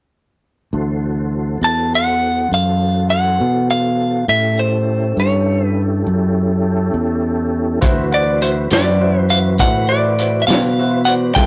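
A gritty, swaggering slow blues in 12/8 opens at 0.7 seconds with a tonewheel organ holding smooth sustained chords through a slow rotary speaker and chorus vibrato, a touch of key click in its tone, over a round, punchy fingered electric bass sitting up front. At 1.6 seconds a clean, picked electric guitar takes the melody, compressed and close, riding high above the organ. The harmony moves from D7 to A7 and then settles onto a D13 when the second section arrives at 7.8 seconds. There a clear baby grand piano joins with open, short-sustained accompaniment, and a vintage acoustic kit enters with hi-hat, a tight kick and a fat snare, its muffled, rolled-off top giving it a lo-fi feel. The whole piece has the rough character of a rehearsal-room recording, with light reverb and warm saturation, and it is cut from a longer performance.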